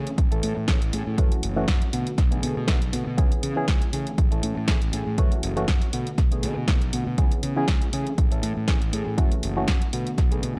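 A reedy, bright electric piano and a round, fuzzy fingered bass open this short cut from a longer piece, both pumping with sidechain compression, with a phaser colouring the keys and overdrive grinding the low end. It is filtered disco house with a joyful, feel-good mood and a light swing on the sixteenths. An up-front, tape-toned electronic kick leads the mix, while a punchy analog drum machine adds snare and hi-hats, the hats breathing with the same pumping. The drums carry a small-room character, and the chords cycle through Amaj7, F#m7, Bm7 and C#m7. The overall production is dark and dry, with little reverb around the instruments.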